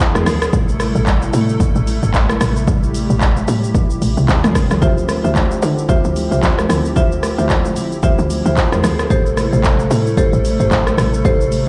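Heard through a big sound system in a bare stone room with light digital ambience, this deep, soulful amapiano cut moves at 112 BPM with a swung sixteenth-note feel, built on a hollow, flute-like pad whose chorused, warbling chords pump against the beat through E7b9, Am7, Ebm11 and Dm11. Up front, a punchy deep house kit with gritty 12-bit sampler character and dark hats lays down kick, claps, rim clicks, shaker and toms, while a woody FM log drum bass hits with fast, decaying punch and high-tuned congas sit distant in the background. At 4.8 seconds a dark, smooth marimba joins with tape-echoed stabs, playing until 11.4 seconds.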